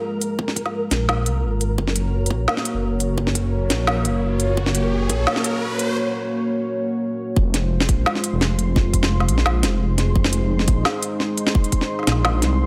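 This excerpt from a longer half-time drum and bass track opens with a dark analog pad holding deep, moody sustained chords with chorus and sidechain pumping, while a flickering, grainy granular texture with its own reverb glimmers in the background. At 172 BPM in a half-time feel and F phrygian, the harmony moves from Fm to Gb during the build-up. An organic electronic kit with a woody snare and smooth, tape-warm hats sits up front from 0.2 seconds, joined by a tight, layered electronic kick and a rumbling, beating detuned saw bass that is saturated and sustained. An electronic riser enters at 3.5 seconds, and the kick and bass drop out for a brief break before returning at 7.4 seconds, when the chords settle back on Fm for the drop. The mix is spacious and cinematic, wrapped in light digital ambience.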